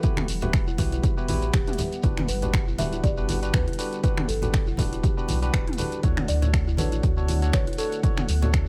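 A punchy, overdriven electronic kick drives this hypnotic, earthy afro house excerpt at 120 BPM in 4/4 with a light swing, joined by an overdriven deep house kit of finger snaps, hi-hat and toms, hard-handed congas, a grainy shekere and a round sine sub bass. Barky electric piano stabs through a combo amp, woody kalimba arpeggios and a buzzing soft-mallet marimba melody with delay sit over a detuned sawtooth pad with chorus, moving from Emadd9 to Dmaj7 at 6.0 seconds in E dorian, with sidechain pumping on the pad, kalimba, electric piano and bass in a dry mix.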